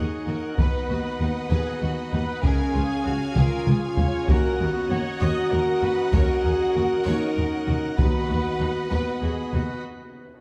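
Opening on lush bowed strings (a violin melody with vibrato over a clear, distant second violin line, rich violas, and cellos and double basses holding the bass), along with mellow French horns and a full principal-chorus pipe organ sustaining chords, this dark, heroic stretch of epic orchestral film score in 6/8 gains heavy-stick taiko drums from 0.6 seconds, a drum fill, hard-mallet timpani at 8.0 seconds and a huge cymbal swell at 10.1 seconds, all within a concert-hall reverb.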